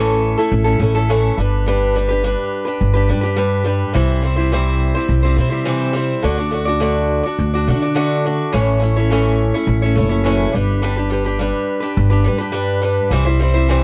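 Rock at 105 BPM with a jangly, warm mood, pairing a bright, boxy parlour steel-string acoustic guitar picking chords through A, G, C and D with a woody, growly pizzicato upright bass, both up front in a dark, dry production across this short 13.8-second cut from a longer piece.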